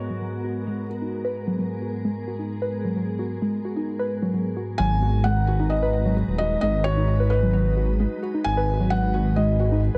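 Cerebral and intricate, this IDM excerpt moves at 131 BPM in a straight 4/4, sitting in G# minor over a G#m7 chord. A glassy FM pad holds sustained chords throughout, its ethereal tone carrying ensemble chorus and its own reverb, while a warbling, dusty pluck spins arpeggios from 0.1 seconds, its lo-fi square-and-saw tone carrying a noise layer, chorus and tape echo, with a filter sweep through the opening stretch. A felt-muted upright piano offers a brief phrase at the start and returns at 4.8 seconds with a soft, intimate melody, its action noise audible and its notes trailed by delay. At that same point a deep, rumbling detuned saw bass arrives up front, saturated and beating as it anchors the low end. The whole sits in a light reverb, the pad's long release blending with the pluck's decaying notes.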